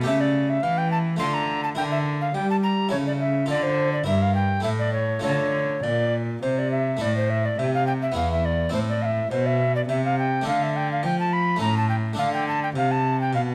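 In a straight 3/4 at 104 BPM, this introspective, solemn baroque-style sonata movement opens in D minor and turns to A minor at 7.0 s, with a mellow, airy wooden tenor recorder melody carrying vibrato, chiff and a crisp attack up front over a single bowed cello bass of reedy, gut-string period tone and a dry, round, plucked Italian-style harpsichord continuo, set in a moderate recital hall reverb and captured by close, detailed microphones.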